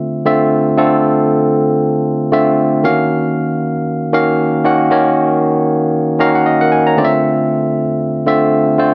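Late-night and hypnotic, this amapiano piece moves at 116 BPM in 4/4 with a 58% swing on the sixteenths. A tine electric piano, ranging from D3 up to Bb5, carries the whole passage alone, its tone bright, barky and clean, played through a combo amp and placed up front in a light reverb. The harmony sits on Dm7, moves to Ebm7 at 2.8 seconds as the drop arrives, and settles back on Dm7 at 7.0 seconds. Within the drop, the electric piano plays a short fill starting at 5.9 seconds. The passage is cut from a longer piece.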